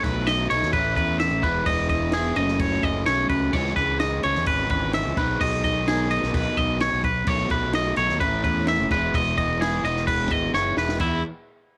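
This short cut from a longer piece has the homemade sound of a cassette recording made in a small room. It is bright, intricate math rock with a midwest emo heart, moving in a straight 4/4. Up front, a clean, twangy electric guitar picks compressed arpeggios high in its register with a cassette-tape colouring, while a double-tracked, overdriven electric guitar carries a lower riff through the same tape sheen. Beneath them, a fingered electric bass with a round, fuzzy overdrive anchors the bottom, and a compact cocktail drum kit adds a dry, natural pulse with a high-tuned snare, a punchy kick and dark crash cymbals. The harmony circles through B7, A, Emaj7, F#m, C#m7 and G#m/B before returning to B7, A and Emaj7, and a drum fill at 10.5 seconds carries the music to a landing on E at 11.0 seconds.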